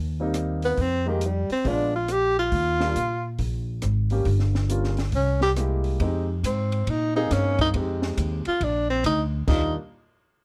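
Playful and relaxed, this brief cut from a small-group swing and bop jazz piece moves at 138 BPM in Eb major, with an up-front tenor saxophone carrying the solo melody in a smooth-topped tone with light vibrato and scooped notes, a woody pizzicato upright bass on steel strings, a natural-sounding baby grand piano accompanying on chords such as Abmaj9 and Fm11, and a dry compact cocktail kit of dark cymbals, high-tuned snare, punchy kick, hi-hat, ride, crash and rim click, set in a dark, warm production with little reverb.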